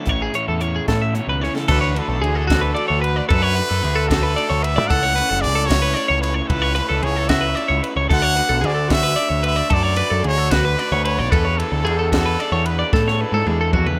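Math rock and midwest emo in a straight 6/8, this playful, bright fragment from a longer piece opens with a very quiet, slightly broken-up electric guitar that drops out by 3.3 seconds, beneath bright, twangy twelve-string arpeggios, a lo-fi, double-tracked garage guitar riff and a growling, overdriven picked bass pushed up front. A compact cocktail kit with dry, dark cymbals, a high-tuned snare and a punchy kick throws in a fill at 1.4 seconds, where a close-miked, pop-style solo trumpet enters with a brilliant lead over chords moving from Amaj9 through D69 and A69 to an unresolved E7sus4. The rough home demo mix is wrapped in studio reverb, and a final drum fill closes the passage from 12.9 seconds.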